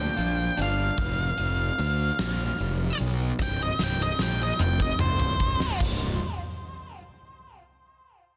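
In a straight 6/8 lilt, this cathartic, restless fragment of quiet-loud alternative rock opens with a dark octave-fuzz lead guitar soloing over a twangy electric guitar's spring-reverbed arpeggios, which stop at 1.0 seconds, while an overdriven fuzz picked electric bass sits up front and a huge arena drum kit with a fat snare and punchy kick plays a fill from 3.4 seconds as the chords move from Bb through Fsus4 to Cmadd11, before the harmony falls away at 5.8 seconds, all in a dry, dense, heavily limited mix.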